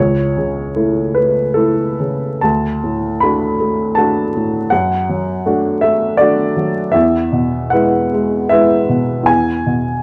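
A baby grand piano opens this short clip from a longer romantic nocturne, its worn, warm tone sitting present and up front over a bed of vinyl crackle. The mood is dreamy and nostalgic, with the solo piano moving in a three-beat metre whose beats fall unevenly under a free, rubato feel. Across its span from C#2 up to B5, the instrument carries the whole clip alone from 0.0 to 10.0 seconds. The harmony drifts from A over C# to D, then D over F# at 4.7 seconds, arriving on E at 7.0 seconds. A moderate reverb of a large studio gives the piano a soft halo of space, while the crackle adds an aged, keepsake quality to the sound.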